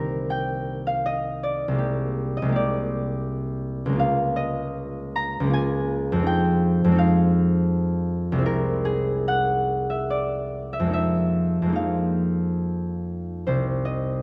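A solo concert harp opens this wistful, mysterious classical excerpt, its fingerpicked, mellow tone ringing up front across a span from C2 to Bb5. The piece moves in a rubato 3/4 at roughly 68-85 BPM in F dorian, tuned to A4 = 439 Hz, with harmonies shifting from Cm7 through Db69, Fm7 and Caug7 before settling back on Cm7 at 13.5 seconds. A moderate scoring-stage reverb surrounds the harp with a gentle sense of space throughout its 14.2 seconds.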